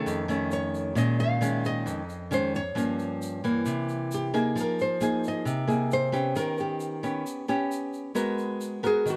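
The rhythm moves in a straight 4/4 bossa nova feel, with a grainy, bright egg shaker sitting in the background from 0.1 seconds. Two fingerpicked nylon-string guitars carry this intimate, melancholic fragment, which is cut from a longer piece. The melody guitar is full-bodied and classical in tone, with audible finger squeak. The accompanying guitar sounds small and sits up front as it works through rich, shadowed harmonies such as Bbm7, Gm7b5, C7b9 and Fm11. At 8.2 seconds the music shifts to a G#m9 chord and a brief nylon-string guitar solo, all in a light reverb.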